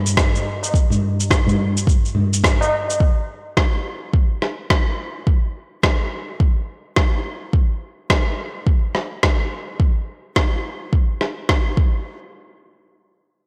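A swung downtempo groove at 106 BPM sets an earthy, mystical mood in this fragment of a longer piece, where a deep, layered electronic kick and a gritty, tape-tinged electronic shaker and rim click with soft clipping on the snare sit up front, joined only until 3.0 seconds by a high-tuned, short-ringing acoustic tabla, all washed in lush hall reverb on a blown-out, overdriven recording.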